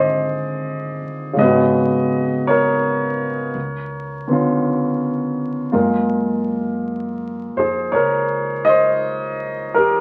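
Intimate and late-night in feeling, this short fragment of a slow jazz ballad moves at 55 BPM in 4/4, with a 68% swing on the eighth notes and tuning set to A4 = 445 Hz. A grand piano sits up front as the accompaniment, its open, warm tone and long sustain filling the space from Db3 to Eb5 across the full 10 seconds. Beneath it, a plucked upright bass on steel strings stays in the background, its woody low notes ranging from Ab1 to Gb2. The harmony drifts through Fm7, Abm11, Db7b9 and Gbmaj9, giving the passage a dusky, unresolved richness. The whole sound carries the character of a very old 78 rpm record, with tube saturation, vinyl crackle and a wet studio reverb that lends a hazy, nostalgic glow.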